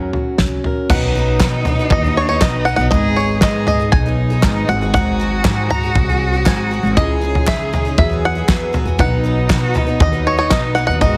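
Indie folk at 119 BPM in B major, hopeful and nostalgic, cut from a longer piece: a bright, twangy bluegrass banjo carries the melody through an analog delay over thumpy pizzicato upright bass and a loose, up-front drum kit with a fat snare and dark cymbals. A fingerpicked plugged-in acoustic guitar with audible finger squeak opens alongside them before stopping at 2.9 seconds, while from 0.9 seconds the arrangement builds with a distant, bowed cello line full of vibrato and portamento, a boxy parlour guitar, a very quiet, mellow upright piano, and an ethereal glass harmonica holding chords in the background, joined at 1.4 seconds by hollow group handclaps. The chords move from G#m through G#7, C#madd9 and Eadd9 back to B, all set in a small room with light reverb and a heavily compressed, radio-like sound.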